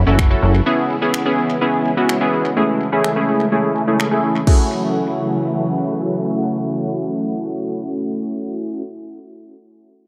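A straight 4/4 pulse at 126 BPM drives this energetic dance-pop excerpt in F# minor, with a pop drum kit of punchy electronic kick, finger snaps and crash cymbal sitting up front under an analog delay until about 4.6 seconds. A plucky analog bass of sawtooth and square wave, edged with ring modulation, sounds one fast, decaying F#1 note at the very start. The funky polysynth comp carries the accompaniment throughout, its detuned, warbling vintage tone chorused, low-pass filtered, delayed and pumping against the sidechain, with a filter sweep across the opening section. Beneath it, a string machine voicing violas holds warm, slow-attack sustained chords in an ensemble chorus, also filtered and pumping. The harmony moves through F#m7, C#m7 and Amaj7 before returning to F#m7 as a second section begins at 4.5 seconds, and the mix is echo-heavy with a moderate spring reverb.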